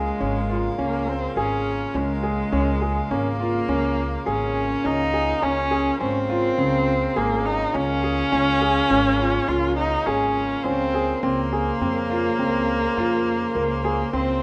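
Contemporary chamber music in an uneven 5/4 at 103 BPM, this shimmering, restless passage in Db major is cut from a longer piece and sits in light reverb. An up-front bowed viola carries a second line with vibrato and portamento, over a concert grand piano of deep, natural tone playing arpeggios, a reedy, breathing pedal harmonium holding mellow sustained chords, and a woody pizzicato upright bass on steel strings. The harmony rests on Db6 before moving to Bbsus2/Db at 11.2 seconds.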